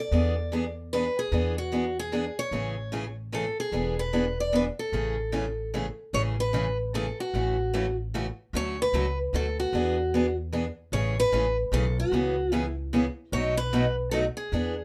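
Acoustic string swing in the jazz manouche style, this playful, charming fragment of a longer piece moves at 150 BPM in a swung 3/4 in A major, with a warm, parlour-toned picked steel-string guitar carrying the melody up front over a bright, fresh-stringed second guitar's boxy picked accompaniment and a dark, woody, thumpy pizzicato upright bass on gut strings, all in a moderate studio ambience as the harmony shifts from E7 and Amaj7 into a second section at 6.1 s that passes through F#m7/A, Dmaj7 and C#m7 before landing on B7.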